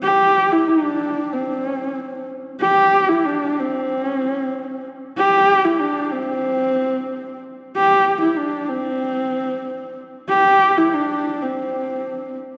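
A lone horsehead fiddle opens at once, bowed by a single player on horsehair strings and placed up front in the sound. This short excerpt of traditional Mongolian folk music feels proud and vast, its line unfolding in free time and staying within the span from C4 to G4. The fiddle's tone is dark, woody and husky, shaped by vibrato and sliding portamento between notes. A long church reverb surrounds the instrument, as if it were heard in a large hall, so each phrase hangs in the space. The fiddle plays on its own from 0.0 to 12.4 seconds, carrying the whole passage as one continuous section.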